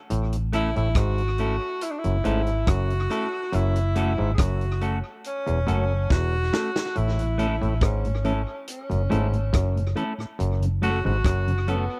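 A laid-back roots reggae groove at 70 BPM in A major opens at once with a stringy, percussive clav riff, a dark, foam-muted electric bass sitting up front, and a vintage drum kit with a punchy kick, medium-tuned snare, rim click and hi-hat, its rolled-off top touched with tape echo. Within the first second a clear tenor saxophone takes the melody, sounding distant and roomy with a light vibrato and tape echo, while a clean semi-hollow electric guitar adds hollow-bodied accompaniment through spring reverb and tape echo. The harmony moves slowly between A and F#m, and a drum fill from 6.1 to 7.0 seconds leads back to the A chord. At 7.2 seconds a mellow, round tonewheel organ joins the accompaniment with chorus vibrato and a slow rotary speaker. The sound is a dry, close 1970s-style studio recording with little reverb, cut from a longer piece.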